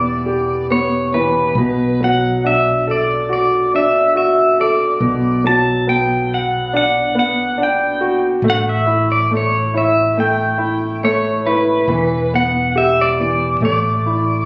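A slow, straight 4/4 pulse at 70 BPM carries this reflective, heartbroken acoustic folk-pop ballad in B minor, moving from Em7 through a long stretch of Bm7 toward an Asus4 at 13.6 seconds. Up front, a twangy, compressed pedal steel guitar sings the melody with fingerpicks, slide and volume swells, beside a brilliant, vintage-toned grand piano, while a dark, round fretless electric bass sits low and direct. The sound has the dull top and roomy feel of a phone recording in the room, dressed with light studio reverb, and the excerpt is cut from a longer piece.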